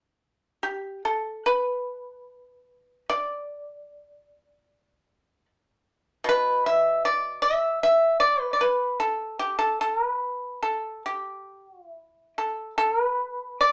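A solo pipa, bright, percussive and up front, plays from 0.6 s to 13.7 s in this serene, flowing piece of Chinese traditional plucked-string music, its fingerpicked tone ranging from B2 to E5. The playing moves in a free, rubato 4/4 feel, with the instrument's dry attack set inside a wet studio reverb. The passage is cut from a longer piece.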